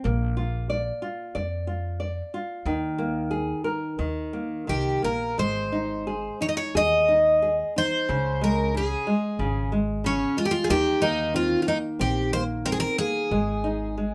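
Passionate and longing, this short fragment of a fado-style ballad in Ab major moves at a rubato 91 BPM in 4/4, opening with a bright, fingerpicked nylon-string guitar, finger squeaks audible up front, over a woody, thumpy pizzicato upright bass on gut strings. At 4.7 seconds a picked twelve-string acoustic guitar takes the melody, its jumbo, shimmering, octave-doubled tone sitting forward and full-bodied as the harmony moves from Bb through Ebsus4 and Eb5 to Ab, Db5 and a closing Ab5. A moderate studio ambience with a short decay frames the intimate trio.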